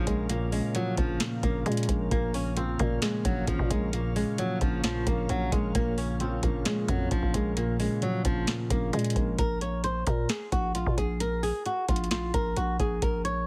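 A fingerpicked flamenco guitar leads this menacing, hard-hitting trap cut, carrying a dark, up-front melody with a touch of delay over a mellow, boxy grand piano and a glassy, ethereal FM pad that sits in the background with ensemble chorus and its own reverb. A growling, buzzy 808-style bass with a fast attack and decaying tail anchors the low end, while a booming analog drum machine, re-recorded in a small room and placed up front, drives a half-time groove of deep kick, crisp snare and metallic hi-hats. The piano and pad drop away around 9.4 seconds as the harmony shifts, leaving the guitar, bass and drums to carry the final stretch to 13.5 seconds. The overall sound is dry and heavily compressed, with a punchy, radio-ready density.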